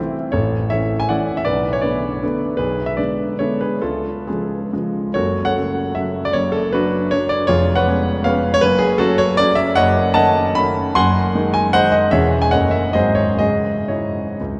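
A classical, romantic triple-time dance for solo piano in 3/4 with dotted rhythms, this short passage cut from a longer piece feels capricious and nostalgic. The tempo ranges from 116 to 172 BPM under a free rubato, and the key moves from F# minor to C# minor at 9.8 seconds. A concert grand piano plays alone throughout, spanning E1 to B#5, with an intimate, up-front presence, deep bass and the audible noise of its action. The harmony opens on A and Bm7 before settling into F# minor at 5.2 seconds, then turns through G#7 toward a close on C#m. A vast cathedral reverb with a long 5.4-second tail surrounds the instrument, giving it an echoing, spacious halo.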